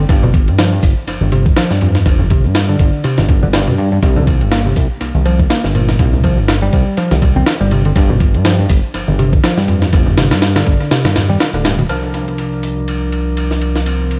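A growly, punchy picked electric bass riff with tube saturation and analog delay opens this energetic, swaggering breakbeat excerpt alongside a fat, detuned analog bass, quickly joined by a gritty, pitched-up sampler-style drum kit with a thumpy kick and high-tuned snare up front and very quiet, close, dry congas, before a soft, flute-like tonewheel organ with sampler grit, sidechain pumping and a filter sweep enters on sustained chords at 11.9 seconds, in an echo-heavy mix dusted with vinyl crackle.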